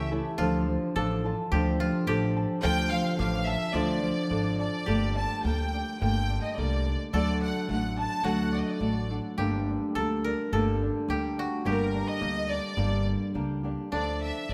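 A rich studio violin section carries the bowed melody up front, with light vibrato and an intense, smooth top. It sounds briefly at the very start, returns at 2.6 s, pauses at 9.1 s and comes back at 11.7 s in this passionate, dramatic excerpt of mariachi-flavoured Mexican folk, played rubato in 2/4. Beneath it, a fingerpicked flamenco guitar provides accompaniment, a dry, woody koto played with fingerpicks adds a second line, a mellow Celtic harp rings out arpeggios, and a pizzicato upright bass with steel strings sits up front, all set in a moderate recital-hall reverb.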